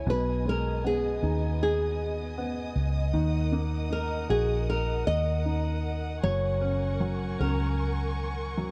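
A melancholic, emotional pop ballad in G# minor at 78 BPM, this short excerpt drawn from a longer piece has a flamenco guitar carrying the melody with fingerpicked lines, audible finger squeak and a tape echo, over a soft, intimate felt-muted upright piano accompaniment. A dark, lush string section holds sustained chords with vibrato and a woody sul tasto tone, while a round, punchy, foam-muted electric bass sits up front. The dry, close 1970s-style studio sound moves through G#m/B, D#m and F#add9.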